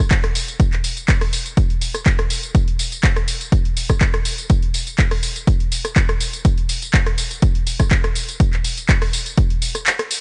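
Funky and groovy, this short house clip from a longer piece moves at 123 BPM in a straight 4/4. An electronic kick drum drives it from 0.1 s to 9.5 s: a layered, produced, tape-warm thump placed up front in the mix. Alongside it, an analog drum machine plays from 0.1 s to 10.2 s, supplying handclaps, hi-hat, rim click and tambourine. This part also sits forward, and sidechain pumping on its hats and percussion gives those parts a breathing, ducking motion. A digital ambience surrounds the drums, and the top end stops at 10.3 kHz.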